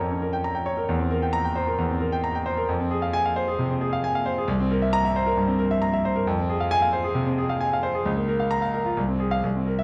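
Classical virtuoso piano study in F minor, passionate and agitated, where a solo concert grand plays with rubato at 134 BPM in 4/4, its clear, smooth, vintage, up-front tone spanning C2 to Bb5 with a deep bass and short sustain, all set in a moderate recital hall reverb with a dark, warm cast across this 9.8-second fragment of a longer piece.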